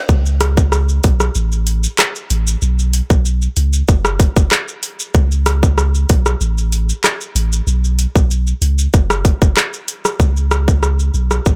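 Dancehall groove at 95 BPM in a straight 4/4, bouncy and sultry in mood, cut from a longer piece. An island pop drum kit runs from 0.1 to 11.6 seconds, electronic and produced, with a tight kick, metallic hi-hats, handclaps, rim clicks and shaker, sitting up front after being re-recorded in a small room. Beneath it, a punchy sub bass moves between F#1 and C#2, a deep sine tone with a pitch-drop attack that sustains into a mellow body, also placed up front. The mix stays dry with little reverb, keeping both parts close and immediate. A brief change of section arrives at 10.2 seconds, carrying the groove through to the end.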